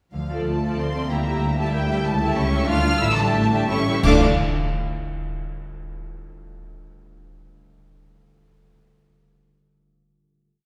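An intense, distant violin section carries the stormy D minor melody high above a fast, rubato orchestral movement in 3/4 at 168-188 BPM, while the rich cello section doubles the tune at the octave and a chamber double bass section plays expressive bass on the beats. A bright concert harp rings out broken chords, second violins and a focused viola section add syncopated and sustained chords from 0.3 s, and from 2.0 s up-front percussion brings cymbal swells, crashes and bass drum strokes. The whole brief piece sits in a church or concert hall with a wet scoring-stage reverb, closing on a band accent and a final D minor chord at 4.0 s.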